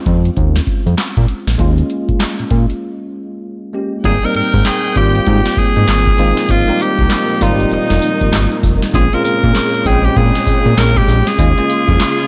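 A raspy, gritty tenor saxophone carries the up-front melody from 4.1 s in this flirty, upbeat new jack swing R&B excerpt at 98 BPM, swung on the 16ths in Ab major, riding over a booming, gated-reverb analog drum machine with a deep kick, crisp snare, handclaps, metallic hats and tambourine, a fat, detuned analog bass with filter sweeps, a bell-like tine electric piano coloured by ensemble chorus, and a lush bowed string section that enters in the background at 4.0 s, the whole mix sitting in light reverb.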